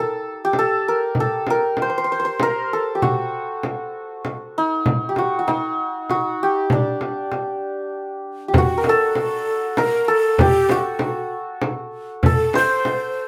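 A shimmering, ringing santur sits up front in this passionate Persian modal ensemble piece, carrying the melody between D4 and C5 from the very start at 98 BPM in a straight 3/4. A small, bright frame drum joins almost at once, played with soft hands and sounding compressed and saturated, also up front in the mix. At 8.5 seconds the music moves into a new passage as a breathy, end-blown ney enters on a second line from F#4 to C5, its reed-cane tone tongued and unsteady, with vibrato and lifted highs. A deep tombak arrives at the same moment, close and dry, struck with hard hands. The players share one room under a moderate studio reverb, tuned to A4 = 438 Hz, in a warm fragment cut from a longer piece.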